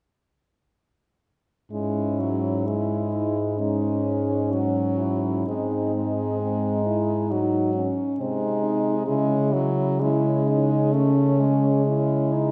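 Classical and lyrical, this melancholic, solemn passage for horn quartet moves in a rubato 4/4 at 61-69 BPM in C# minor, the four French horns entering together at 1.7 seconds: a warm, distant, roomy horn carries the melody with light vibrato from the background, a mellow horn with light vibrato sings the second line, a clear horn with light vibrato sits up front on accompaniment, and a dark, smooth-topped horn holds the bass, all set in a wet concert hall heard from further back as the harmony moves from C#m/G# through G#7 to C#m before the cut at 12.5 seconds.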